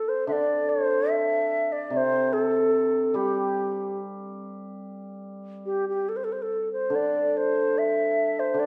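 Graceful and pastoral, this brief rubato fragment of Chinese traditional music sets an airy, mellow bamboo xiao melody up front, with its straight tone and crisp attack, over a shimmering, ringing hammered dulcimer accompaniment that enters at 0.3 seconds, both bathed in a wet recital hall reverb.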